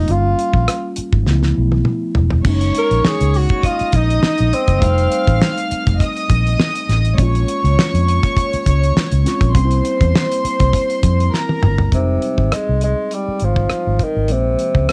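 A breathy, dark tenor saxophone opens this lush 1970s-style soul excerpt at once, carrying the melody over a mellow, clean tine electric piano and a round, foam-muted fingered bass that sits up front. A dry, polished drum kit with a fat snare, tight kick and dark cymbals joins almost immediately, adding a drum fill before a reedy, gut-string studio section enters at 2.5 seconds as a bowed second line high above. The saxophone, with its scooped notes and distant, roomy jazz-style tone, drops out at 5.7 seconds. The period-style strings and plate-reverbed electric piano then carry the silky, bittersweet mood alongside the bass and drums, through a richly colored, lightly swung passage of extended chords. A second drum fill leads into the return of the opening section at 11.9 seconds, where the strings fall away and the saxophone comes back. A cassette tape coloring on the saxophone, piano, strings and drums gives the home-recorded sound a soft, vintage glow.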